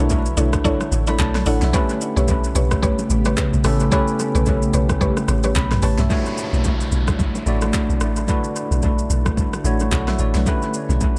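A deep, round log drum bass sits up front in this late-night, hypnotic amapiano excerpt, its dark percussive notes decaying over a swung deep house kit with a fat snare, metallic hats and a tape-warm tone, joined by very quiet, ringing bongos and congas played with soft hands. A bell-like tine electric piano with dub echo and a mellow, ethereal pad in the background carry Bm11 and A9 chords, while a woody, warbling mallet-like synth pluck stabs through the first 6.1 seconds before giving way to an electronic downlifter that runs until 10.5 seconds. The echo-heavy mix has only light reverb.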